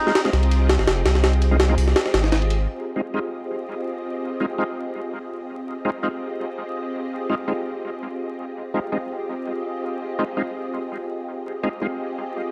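A dry, gritty hardware sound with light reverb and a layer of vinyl crackle frames this frenetic, nostalgic drum and bass cut, a jungle piece in F minor running at 166 BPM with a slight swing on the sixteenths. It opens on a drop built over an Fm7 chord. Up front, a compressed, pitched-up sampler-style kit snaps out hi-hat, ride and a high-tuned snare in a small room, and a deep, saturated sub bass with a fast attack holds thick, sustained low notes. Both stop near 2.7 seconds, when the second section begins. Carrying on to 12.5 seconds, a soft, silky vintage string machine sustains chords with a slow attack, long release and ensemble chorus. An overdriven tonewheel organ adds full, thick stabs colored by chorus vibrato, a slow rotary speaker and dub echo.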